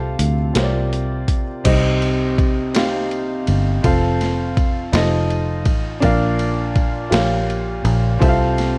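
Soulful and uplifting, this short excerpt from a longer piece is slow gospel in 6/8 at 55 BPM in F major, tuned slightly flat with A4 at 437 Hz. A dark upright piano carries the accompaniment, its woody, boxy tone mellow and intimate, with audible action noise and long sustain. A fingered electric bass sits low and round, foam-muted and direct, while a gritty, pitched-down boom bap sampler-style kit enters at 0.2 seconds with a thumpy kick, high-tuned snare, hi-hat, ride and crash. All three parts sit up front in a light reverb, the drums sounding compressed. The harmony moves from F/C through C9sus4 and a shift to Cm at 1.6 seconds, then continues through F and F7 to Bb and Bbm6 before settling back on F/C.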